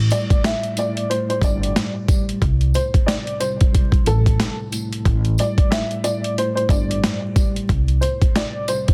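A mellow tine electric piano and a pizzicato upright bass open this dark, moody boom-bap hip-hop excerpt at 91 BPM, with a 16th-note swing. The filtered electric piano plays low chords through its built-in speakers, moving between Gsus2 and Am and landing on Amadd11. The steel-strung bass is woody, thumpy and up front, and it drops out at 8.0 seconds. From 0.1 seconds a worn, boxy upright piano carries the melody high above, slightly detuned and intimate, with audible action noise, short sustain and a digital delay. A gritty, pitched-down sampler-style kit drives the groove with a thumpy kick, high-tuned snare and hi-hat, while a jingly tambourine sits in the background. Vinyl crackle and a dense, heavily limited modern master round out the sound.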